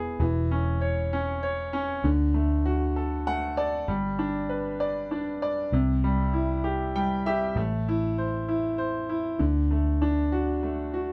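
A live-in-one-room sound with moderate studio reverb frames this tender, heartfelt six-eight pop ballad excerpt, where a bright, up-front baby grand piano carries the accompaniment through chords moving from C#m/E to D, G, C and Am, adding brief fills at 3.0 and 6.6 seconds, over a dark, round, foam-muted vintage electric bass playing fingered lines low beneath it.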